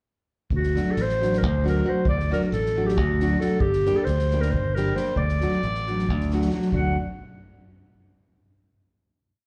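Balkan folk in the manner of a Balkan wedding band, this short, complete piece burns with fiery, virtuosic energy in a straight 7/8 at 270 BPM counted in eighths. A warm, roomy clarinet carries the solo melody up front, spinning motif-based song phrases in a classical style with a slapback echo that gives it a distant sheen. Beneath it, a dark, full-bodied nylon-string guitar is fingerpicked with off-beat triad chords, also touched by slapback echo, while a bright, direct fingered electric bass sits up front with root-and-fifth notes on the main beats. A soft-mallet drum kit adds a natural hall quality, with a fat snare and boomy kick in a two-stick pattern. The harmony moves from D to G minor at 3.6 seconds and back to D, and the piece closes on a final chord from 6.7 seconds, all heard as a live gig through the venue's PA with club ambience and a light, small-room reverb.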